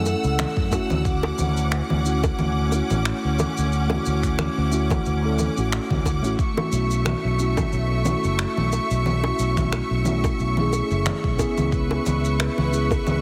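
A bright fretless electric bass sits up front with an ensemble chorus, anchoring this wistful, smooth sunset chillout cut from a longer piece at 90 BPM in 4/4, with a 55% swing on the sixteenths. A mellow tine electric piano, softened by a low-pass filter and tape echo, plays accompaniment while a clear symphonic string section with light vibrato holds sustained chords over F#m7, Dmaj7, B9sus4 and C#m7. Layered electronic shaker, finger snaps and congas arrive at 0.1 seconds with tight, high-tuned bongos tucked in the background, and a deep electronic kick joins at 0.6 seconds, all under light reverb and a heavily compressed radio sound.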